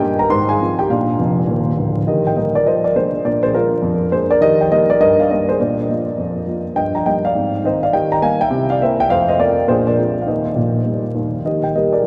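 A dark, mellow grand piano sits up front in a vast, wet cathedral reverb, its worn tone wrapped in a haze of vinyl crackle and the intimate clatter of audible action noise. This is a playful, exuberant stride piano piece in a swung 4/4, heard as a short cut from a longer performance. The solo piano ranges from deep bass notes up into the upper register, and a quick fill between 1.2 and 2.1 seconds leads into the main passage. From there the harmony moves through a lively cycle of chords, passing through a C7 and an F before a Bb9 resolves home at 10.3 seconds. The long, ringing decay of the hall lets each phrase bloom and linger, giving the jaunty playing a ghostly glow until the piano stops at 12.1 seconds.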